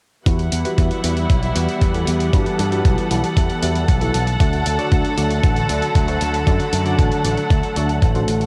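A straight 4/4 pulse at 116 BPM drives this bittersweet, nostalgic italo disco excerpt in E minor, where a gritty, thumpy electronic kick and a compressed hi-hat sit beneath a bright, amped picked electric bass with an envelope filter, a dark, woody string section holds sustained chords up front as the harmony moves from Emadd9 to D at 4.4 seconds, and a glossy chorused polysynth adds background stabs through phaser and digital delay, set in a 1980s-style digital production with moderate plate reverb.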